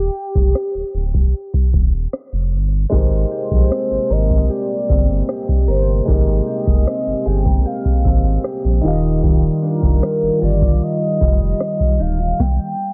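A mellow, horn-like synth lead with chorus and vibrato opens this romantic, smooth contemporary R&B passage at 76 BPM, over a deep, sustained sub bass and a booming analog drum machine with a crisp snare, metallic hats and rim clicks sitting up front. At 2.9 seconds a warm grand piano with audible action noise, a shimmering chorused pulse-width pad with sidechain pumping, and a clean, direct-recorded electric guitar playing arpeggios through digital delay all enter, drifting between lush major-ninth chords in Ab lydian. The dry, low-pass-filtered mix carries a filter sweep throughout this short cut from a longer piece.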